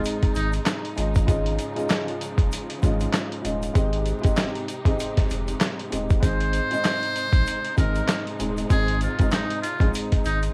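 A muted trumpet, buzzy and thin with light vibrato, takes a jazz-style solo up front, touching in at 0.4 seconds before returning at 6.2 seconds over a dark, woody upright piano, gritty sampler-style drums with a thumpy kick, handclaps and hi-hat, and a thick, saturated sub bass in this confident boom-bap hip hop excerpt at 97 BPM in Ab major with a swung 16th feel. Lush bowed strings and a grainy tube shaker sit in the background as the chords move from Ab through Dbadd9/Ab and Cm back to Ab. Small room ambience, cassette tape colour and vinyl crackle give the cut a homemade, dusty sound.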